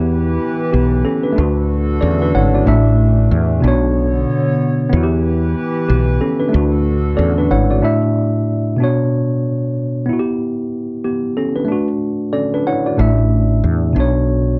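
Warm and soulful, this hip hop excerpt moves at 93 BPM in D major with a 16th-note swing, tuned slightly below standard pitch. A worn, slightly out-of-tune tine electric piano carries the accompaniment throughout with a cassette-tape character, while a hollow, flute-like pad with chorus holds soft sustained chords and a growly, round fretless bass sits up front until 7.8 seconds, the bass returning at 13.0 seconds. The dark production and light reverb frame a cycling progression from Em through D and Asus4 to Bmadd9.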